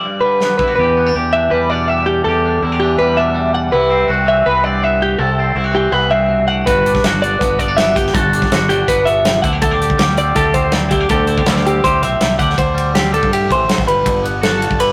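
Bright and wistful, this math rock and midwest emo excerpt opens with a brief drum fill over clean, compressed twelve-string electric guitar arpeggios and a twangy, scooped electric guitar accompaniment, and a growling, overdriven fingered bass enters beneath them at 0.8 seconds, while the punchy studio drum kit with its bright cymbals returns at 6.7 seconds as chords such as Gmaj7, Em7 and Cmaj7 pass through a rough rehearsal-room sound with warm saturation and moderate stone room reverb.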